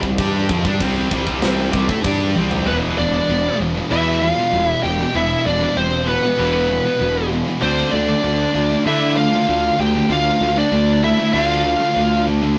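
A dark, high-gain lead guitar carries the melody up front from 2.7 seconds, shadowed by a second lead line further back, over a heavy metal groove at 97 BPM in E phrygian with chords moving from C5 to Em and Dm. A growly, fuzz-drenched fingered bass sits prominently beneath three bright, picked rhythm guitars, one scooped and one double-tracked, all playing riffs in the background. A tight acoustic drum kit with a high-tuned snare and bright cymbals drives the opening and closes it with a fill at 2.4 seconds, all captured in a rough rehearsal-room sound with tube saturation and light reverb, in this heavy, dark excerpt from a longer piece.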